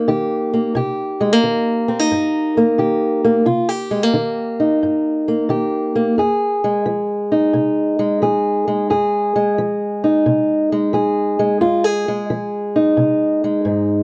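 A dry, close 1970s-style studio sound with light reverb frames this soulful, smoky 14-second blues fragment at 88 BPM with a swung 4/4 feel, where a solo fingerpicked old ladder-braced acoustic guitar, dark and boxy with old strings and sitting up front, moves from Cm7 to Fm7 at 6.2 seconds, tuned slightly flat to A4 = 437 Hz.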